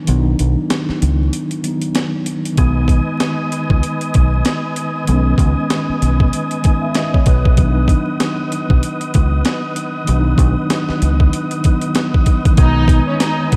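Boom-bap hip-hop at 96 BPM in B major, this nostalgic, soulful cut from a longer piece swings on a gritty, compressed sampler-style drum kit with a thumpy kick and high-tuned snare, a dark, round fingered electric bass up front and a mellow tine electric piano, joined at 2.6 seconds by a clear, percussive tonewheel organ with chorus vibrato and at 12.6 seconds by a lush, distant bowed violin section with portamento and analog delay, all in a dreamy mix soaked in cathedral reverb and vinyl crackle.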